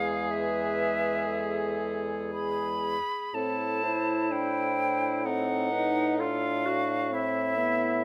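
A bright, airy silver flute leads this slow, elegiac wind quintet movement, its soft-attack vibrato line sitting up front in the high register while a distant, roomy oboe carries a second line beneath it. French horn and a background clarinet fill out the accompaniment, and a mellow, smooth-topped bassoon anchors the bass as the harmony moves from E through A minor and a diminished chord back to A minor. The solemn, rubato phrasing at around 54-65 BPM is captured by close, detailed microphones with light reverb in this short cut from a longer piece.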